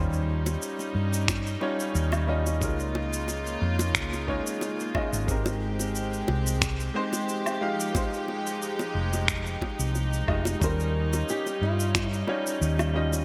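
A gently swung 90 BPM groove of gritty, gated cabasa, finger snaps and woodblock, very quiet low-tuned bongos and a thumpy electronic kick underpins this smooth, wistful sunset chillout excerpt, where a punchy, dark hollow-body bass sits up front beneath a clear grand piano with lo-fi sampler grit and delay and earthy bowed chamber strings moving through lush jazz chords, before a fingerpicked flamenco guitar melody drifts in with chorus and delay at 10.6 seconds and a faint glassy harmonics texture shimmers in the background from 11.4 seconds, all set in a lush hall with bright 1980s-style digital sheen.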